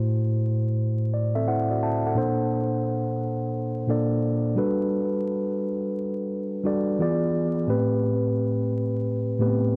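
Melancholic and reflective, this hip hop fragment from a longer piece features a mellow tine electric piano playing alone throughout its 9.8 seconds, clean and up front, colored by cassette tape, a low-pass filter and analog delay. Its swung sixteenth-note feel carries a dusky progression from Am6 through Bbmaj9 and Gmaj9 to a tense E7b9 at 7.0 seconds before settling on Am9. Moderate studio reverb, a dark, warm production and a bed of vinyl crackle lend the sound a worn, intimate character.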